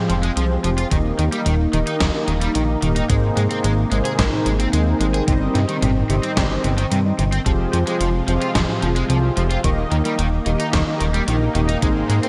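Synthwave at 110 BPM in a straight 4/4, nocturnal and nostalgic, cut from a longer piece and moving through Fmadd9, Eb, Abadd9 and Cm/G chords. A swirling, wave-folded pad pumps with sidechain under phaser and chorus while dark, round synth brass stabs through digital delay, a crunchy overdriven guitar picks a bright riff with ensemble chorus, and a fat, detuned sawtooth bass sits up front with a filter sweep. A clean 12-bit drum machine with gated reverb, a fat snare, hi-hat and toms is joined by a thumpy electronic kick from 0.9 seconds, all set in a lush hall and a bright 1980s-style digital sheen.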